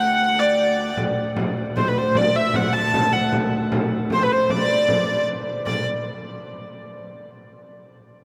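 Medieval dance with an ancient, rustic mood at 102 BPM in a straight 6/8, set in D mixolydian, in which a nasal, reedy hurdy-gurdy carries the melody up front over a dark, woody viola da gamba drone on a low D with light vibrato, joined at 1.0 s by a small, bright frame drum, the whole brief cut from a longer piece bathed in a long, wet cathedral reverb.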